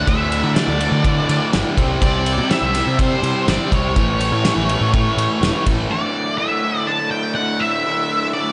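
A big arena sound with a moderate scoring-stage reverb and a top end capped at 10.3 kHz frames this cathartic, anthemic slice of quiet-loud alternative rock, cut from a longer piece and moving at 124 BPM in a straight 4/4. Up front, a dark octave-fuzz lead guitar carries the melody, its distortion trailed by slapback echo and analog delay. Behind it, two bright, overdriven picked guitars play riffs with slapback echo, over a round, fuzzed electric bass and a loose, punchy indie drum kit with gritty saturation and dark cymbals across kick, snare and ride. A very quiet string machine adds shimmering, vintage violin chords with a soft attack and ensemble chorus. The harmony cycles through Dsus2, C and A, and at 5.8 seconds the bass and drums stop. The distorted guitar drops out at 5.9 seconds, leaving the lead, the garage guitar and the strings to carry the repeat of the opening section until 8.5 seconds.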